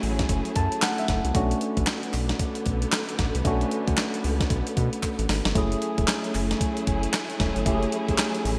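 This new jack swing R&B excerpt has a confident, bouncy, swung feel. A crisp 8-bit drum machine sits up front with a thumpy kick, medium-tuned snare, hi-hat and handclaps in gated reverb, and it plays a fill at 5.0 seconds. A round, deep analog bass sits under a clean tine electric piano, which opens with a fill at 0.3 seconds, and a lush bowed string section with vibrato holds sustained chords that move from F#m7 to Bm9 and back. A very quiet, close and dry group handclap enters at 0.8 seconds, and the bright 1980s-style digital production sits in a moderate, lush hall reverb.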